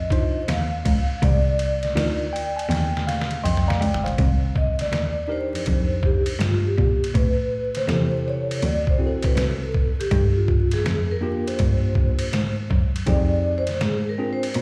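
Heard as if through a club's PA with reverb and vinyl crackle, this nocturnal, smoky jazz-hop excerpt swings over a gritty, pitched-down sampler-style drum kit with a thumpy kick sitting up front, while a single bowed cello carries the bass with rich, even vibrato. A worn, slightly out-of-tune tine electric piano accompanies with slapback echo and adds a fill from 2.0 s, as the drums fill from 2.7 s. From 4.2 s the soft-mallet vibraphone, ringing and metallic with fast motor vibrato and its own slapback echo, takes a solo over the changing chords.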